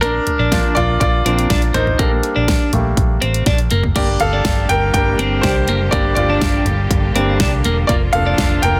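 A dense, heavily limited modern master with light reverb frames this hopeful, piano-driven pop cut, moving at 122 BPM in a straight 4/4 from Bb through G minor colours. The bright, woody upright piano sits up front and carries solo lines throughout, over a twangy, clean twelve-string electric guitar riff, a round, foam-muted vintage bass and a punchy, layered pop drum kit with a fat snare. After a drum fill at 3.5 seconds, a lush, bowed studio string section enters in the background at 4.0 seconds with smooth sustained chords.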